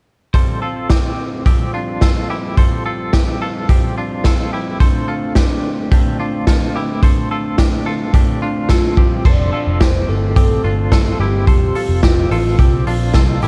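This nostalgic, sunny fragment of jangly indie pop opens with a full band at once: a raw garage drum kit sits up front with a punchy kick, gritty saturation and dark cymbals in a stone-room sound, alongside two picked electric guitars. One guitar runs through a small old amp, slightly broken-up and compressed as it carries the accompaniment, while the other is clean and twangy, playing arpeggios with a tremolo effect. The music moves at a straight 108 BPM in 4/4 in F major, with the harmony shifting from Fadd9 to Dm7 and back. At 8.7 seconds a soft, round synth lead layered in octaves enters with the melody, its sustained tone carrying vibrato, chorus and phaser. A vintage muted electric bass joins at 9.3 seconds, amped and foam-muted, as the piece moves into a new section. Light reverb and a warm, dusky production give the recording a mellow glow.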